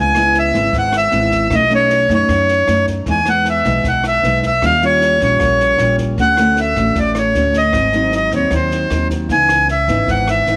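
Bossa nova in C# minor at 154 BPM, a melancholic, wistful excerpt cut from a longer piece, where a reedy, mid-forward accordion carries the melody up front over a small, thumb-plucked nylon-string guitar and a woody, pizzicato upright bass with steel strings. A compact cocktail drum kit sits dry in the background, its high-tuned snare, rim click and tight kick entering at 0.1 seconds, while the chords drift from C#m7 through Emaj7 and Dmaj7 to settle on C#m9 at 9.3 seconds. The room carries a light studio reverb.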